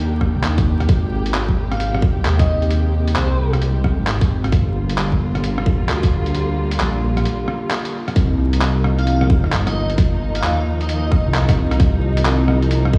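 Future garage with a melancholic, nocturnal mood, cut from a longer piece, moving on a swung sixteenth-note feel. A deep, rumbling detuned saw bass sustains underneath while a dark bowed chamber string section holds sustained chords, both pumping under sidechain compression, with the strings smooth-topped and carrying expressive vibrato. Up front, a tight, layered electronic kick drives the groove, while a muffled, pitched-down sampler-style kit adds compressed handclaps, hi-hat and rim clicks. An airy, dreamy lead with a soft noise layer, chorus and tape echo floats in briefly from 1.7 s and again from 9.0 s, after a short break at 7.3 s that carries a band accent. The harmony drifts from a rootless Cm9 through Abmaj9 and Gm7 to Cm7, all set in large studio reverb with vinyl crackle and the hollow sound of a big system playing in a bare room.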